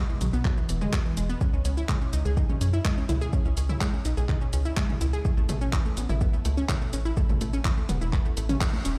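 Dry at the source but played through a big sound system in a bare, reverberant room, this hypnotic, dark melodic techno excerpt moves at 125 BPM in 4/4 over E, C#m and A. A deep, overdriven electronic kick sits up front beside a tight, punchy sequencer bass of sawtooth and square waves with a moving notch and sidechain pumping. Meanwhile a lush, detuned unison pluck spins bright arpeggios through cassette tape, delay and pumping, and a layered deep house kit of handclaps, hi-hat, shaker and toms, also run through overdrive, pumps beneath, with the band hitting an accent at 8.6 seconds.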